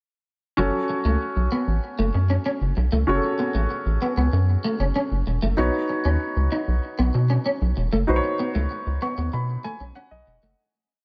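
A rubbery, hollow square-wave bass sits up front with a fast-attack filter pluck and a dark, resonant edge, playing a bouncy, syncopated pop-funk line. This brief, moody pop piece in F# dorian, tuned to A4 = 443 Hz, moves at an urgent 96 BPM in a straight 4/4, with all three parts entering together at 0.6 seconds for a single verse. A baby grand piano holds close-voiced chords with a warm presence, adding grace notes and short fills. An electric guitar at the edge of break-up plays a compressed, picked, muted single-note riff coloured by ensemble chorus and digital delay. The harmony moves from F#m to Badd9 under light reverb and studio ambience, and a fade-out begins at 8.1 seconds, with the piano adding a final fill from 8.7 seconds.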